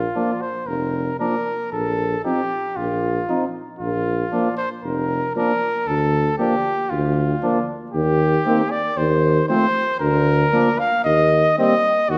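This classical brass quintet excerpt moves at 116 BPM in a straight 4/4 in B-flat major, with a solemn, grave mood throughout. A clear trumpet carries the melody up front from the start, its light vibrato and soft attack giving the line a poised, singing quality. Beneath it, a tuba anchors the bass, also placed up front but with a roomy, distant quality, while a flugelhorn sits in the background with a warm second line. The French horn adds accompaniment with a smooth top, and a punchy, vintage-toned trombone with vibrato fills out the harmony from further back. The harmony settles on B-flat chords before passing through rootless C minor seventh and F seventh colours over an E-flat bass, and the whole ensemble sits in a wet recital hall reverb that lets the chords bloom, with the inner parts falling silent at 11.7 seconds as trumpet and tuba carry on to 12.2 seconds.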